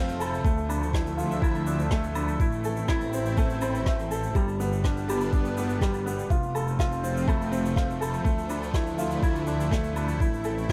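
A lush, detuned unison pad, a felt-muted upright piano riff and a bowed double bass section all begin together at the very start of this cinematic, hypnotic piano-and-strings electronica excerpt, cut from a longer piece and moving at 123 BPM in a straight 4/4. The pad holds sustained chords with a slow attack, its sawtooth and square-wave tone thickened by chorus and phaser and pulsing with sidechain pumping. Up front, the mellow, intimate piano carries a short-sustain riff through a delay, while the distant, focused bass ensemble adds vibrato and its own sidechain pumping in the low register. A small-room kit of shaker, woodblock and rim click, played with brushes, enters at 0.1 seconds with a natural acoustic sound, and a soft, overdriven electronic kick sits forward from 0.4 seconds. The drop arrives at 0.5 seconds, moving through Dmadd9, Am, G and F before returning to Dmadd9 and Am, all within a light reverb.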